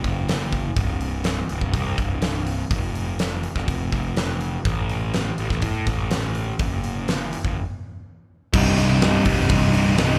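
Dark and angsty, this short cut from a quiet-loud alternative rock piece at 124 BPM, heard live through a club PA, opens with growly overdriven fuzz bass and a huge arena drum kit with a fat snare and punchy kick, pauses for a break at 7.6 seconds, then drops into a double-tracked distorted fuzz guitar riff on C minor at 8.5 seconds.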